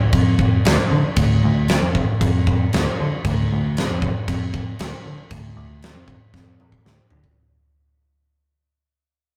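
A big-room acoustic drum kit sits up front, with a fat snare, punchy kick, crash cymbal and toms, driving this gritty, heavy slice of blues rock with a southern rock edge in a straight 4/4 feel. Beneath it, a dark, round, foam-muted electric bass plays from 0.1 to 7.2 seconds through an amp. The rough rehearsal-room sound carries light reverb and tube saturation, the whole passage fades out, and a drum fill closes it from 6.3 seconds.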